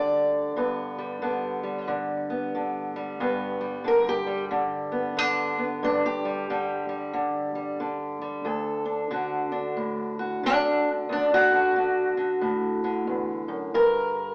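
Rollicking and swaggering, this short excerpt of acoustic country blues moves at 91 BPM in 4/4 with a 62% swing on the eighth notes, set in G major. A fingerpicked steel-string acoustic guitar carries the whole passage as a solo, sitting up front with a dark, boxy parlour tone and ranging from D2 up to D5. The harmony rests on G before shifting to D at 8.5 seconds and landing on a G5 at 13.7 seconds. The sound has the feel of a band playing live in one room, with a moderate large-studio reverb and an AM-radio character. The piece is cut from a longer performance, so the passage feels like a snapshot of an ongoing tune.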